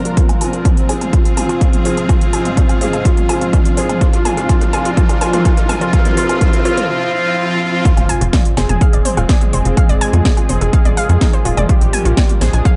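An echo-heavy, spring-reverberated mix with a dulled top end gives this dark, dramatic melodic techno excerpt a hazy, dubby sheen. A punchy electronic kick sits up front, joined by a techno kit of cracking snare, smooth hats, toms and woodblock, both re-recorded in a small room. A fat, detuned analog lead carries the melody with vibrato, tape coloring, subtle chorus and dub echo, while a warbling, lo-fi pluck spins arpeggios through chorus and analog delay. Beneath them sit a deep, moody ambient pad, a biting symphonic string section in the background and bold, brassy pad stabs with tremolo, the strings and stabs breathing with sidechain pumping alongside the lead and pluck. The opening builds with a drum fill and filter sweeps on the lead, pluck and brassy pad, faint riser and swell effects, and a short break at 6.9 seconds. The drop lands at 7.9 seconds on an impact as the stabs fall away and a tight, nasal sequencer bass drives in from 8.0 seconds, with the harmony moving from F minor to B-flat near the close.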